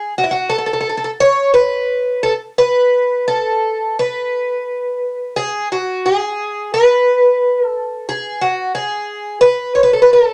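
A picked twelve-string acoustic guitar carries this brief fado passage entirely on its own, sitting up front with a shimmering, octave-doubled ring from its fresh strings. Its archtop body lends the tone a slightly boxy character, and a touch of finger squeak adds an intimate, human detail. The mood is longing and mournful, with the playing moving in a loose rubato feel around 88 BPM in 4/4. The melody stays within a narrow span from E4 to C#5 across the full 10.3 seconds, cut from a longer piece. A moderate studio reverb gives the guitar a modest sense of space, keeping the sound close and personal.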